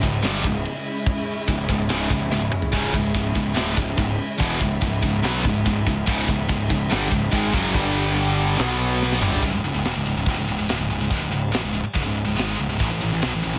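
An up-front, saturated metal drum kit with a tight kick and a gritty, rolled-off top powers this dark, relentless heavy metal excerpt in a half-time feel, while three bright, picked electric guitar riffs (one crunchy and double-tracked, one high-gain, one scooped) sit in the background over a growly fuzz bass, and a lush bowed string section holds smooth, sustained chords with vibrato and portamento until 9.4 seconds, when the strings and two of the guitars drop away and the half-time feel ends, leaving the scooped guitar, bass and drums to press on under light reverb and a dense, heavily limited master.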